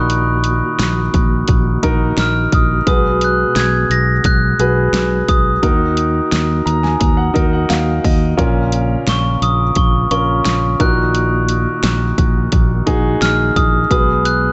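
Piano-driven pop with a hopeful, warm mood, moving at an unhurried pace in a straight 4/4 feel through a short passage cut from a longer piece. A glockenspiel struck with soft plastic mallets carries the melody high above the band, its dark, bell-like ring trailed by delay. Beneath it, a clear concert grand piano plays the accompaniment with an intimate, polished presence, audible action noise and long sustain, and it steps forward with a fill from 6.3 to 8.4 seconds. A mellow tonewheel organ holds very quiet, flute-like sustained chords through a fast rotary speaker with chorus vibrato, while a fingered electric bass sits low and punchy. An up-front electronic pop drum kit, layered and produced with a punchy kick, fat snare and warm hi-hats, enters at 0.1 seconds, and the whole mix is bathed in light reverb with a rounded, dulled top end.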